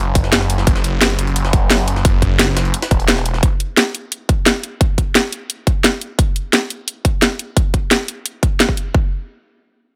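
Dark technical drum and bass at 174 BPM in 4/4 with a straight feel, this short cut from a longer piece sounds futuristic and aggressive, sitting on F# minor. A deep, moody analog pad with chorus and phaser breathes in at the start and fades from hearing by 0.6 seconds, barely audible beneath the mix. A snarling distorted saw bass growls between E1 and F#1, its detuned unison sawtooth tone made bright and up front by distortion and tube saturation until 3.4 seconds. The main drums are overdriven: a punchy, layered electronic kick sits up front with a small-room sheen, while the main kit delivers a cracking snare and bright hats, and a very quiet, gritty, pitched-up sampler-style jungle kit with a high-tuned snare sits far behind in a large room until 3.4 seconds. The mix is dry with little reverb, and after 8.9 seconds the chord drops away as a brief second section begins.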